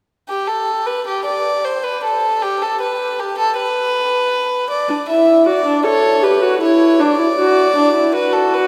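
Classical baroque-style fugue for string quartet, lively yet stately, moving at 52 BPM in dotted quarters in a straight 6/8. A violin with an airy, nasal, gut-string period tone carries the second line from 0.3 s, and a dark, reedy viola with light vibrato and a smooth top joins as accompaniment at 4.9 s, as the harmony settles on D and A7. Both players sit up front, set in a vast, echoing cathedral space, in this excerpt cut from a longer piece.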